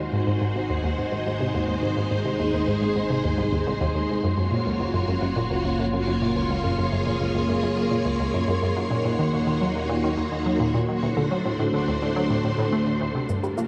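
Cosmic and mysterious, this ambient, sequencer-driven space music moves at 106 BPM in a straight 4/4, tuned slightly flat to A4 = 439 Hz, in a short cut from a longer piece. Lush, vintage string-machine chords sit up front with a slow attack and ensemble chorus, while a round analog pluck of sawtooth and square waves plays a low riff through chorus and tape echo, with a filter sweep moving over the synth arpeggio sound. An evolving, wave-folded analog drone joins in the background at 0.7 seconds, and an airy, breathy wind-like noise texture hovers high above. The harmony moves through Ab7, Gbmaj7, Ebm7 and D7. Only at 13.3 seconds does electronic shaker and woodblock percussion slip in with tape echo, followed at 13.4 seconds by brief, dark, detuned arpeggios from a gentle pluck. The whole is bathed in a huge ambient reverb and the worn, warbling pitch drift of old cassette tape.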